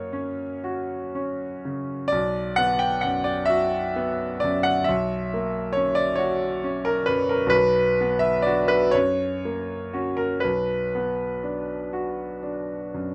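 Closely miked with light reverb, this wistful, yearning excerpt from a romantic nocturne for solo piano unfolds in a rubato 12/8, its bright grand piano ringing brilliant and smooth with a vintage character, long sustain and an up-front presence as it moves between F# and B minor harmonies across a range from B1 to G5.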